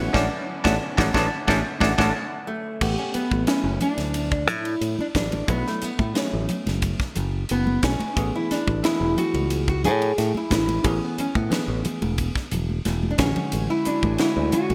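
This bright, soaring electric jazz fusion excerpt opens at 90 BPM in a straight 4/4 with a band accent: bell-like tine electric piano drenched in lush chorus, a growly, up-front fingered bass, a crisp drum kit with a high-tuned snare, tight kick and gated reverb, damped congas in the background, and very quiet bowed symphonic strings that drop out at 2.8 seconds. At 2.5 seconds a full-bodied, fingerpicked nylon-string guitar takes the melody over rich jazz chords, and drum fills mark the turns before the soft-attack strings return at 13.5 seconds. A lush hall reverb and bright 1980s-style digital production give the whole band a glossy sheen.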